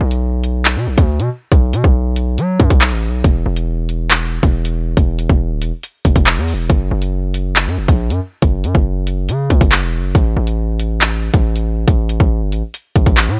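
A half-time 4/4 pulse at 139 BPM drives this menacing, cold drill hip hop excerpt in B minor, where an up-front electronic drum kit of hard-clipped kick, metallic hi-hats and handclaps with a tape-warm edge sits over a heavy, aggressive 808-style bass whose saturated sine tone carries a noise layer, a fast attack and a decaying tail, framed by a digital ambience.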